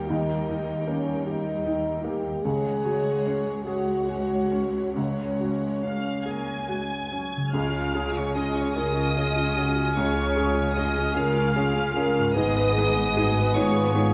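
Opening this slow, rubato 6/8 cinematic cue at 45-52 BPM, a smooth violin section carries the hopeful, emotional melody over a focused second violin line, soft-attack French horn chords, expressive violas, lush bowed cellos, a ringing harp in the background and an intimate felt-muted upright piano with audible action noise, set in a moderate scoring-stage reverb, until at 7.5 s a pure, hollow flute, a distant clarinet and portamento double basses join for the uplifting second section.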